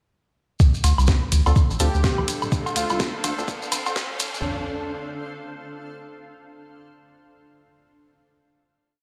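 A soft, tape-warm electronic kick sits up front in a four-on-the-floor pulse at 125 BPM in 4/4, swung at 60% on the sixteenths, entering at 0.6 seconds alongside grainy, mellow maracas shaking out hand-played sixteenths. This sparse and quirky minimal techno piece in D minor, resting on a Dm7 chord, is one continuous build-up with a filter sweep, and a background riser adds transition effects from 1.3 seconds. A garage drum kit brings a cracking snare backbeat and bright programmed hats, while analog-sounding cowbell, woodblock and congas click and blip in cross rhythm through tape echo. Underneath, a deep, saturated sine sub bass rolls in a staccato groove, pumping with the sidechain, as a blurred, cloudy granular pad with its own reverb slowly shifts chords and pumps too. A hollow, organ-like stab drops dark, echoing chords moved in parallel in the background, and an airy, dreamy lead with chorus and vibrato offers short answering phrases from 1.8 to 3.0 seconds. 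The whole sounds as if played on a big sound system in a bare stone room, with light reverb and a high-pass filter.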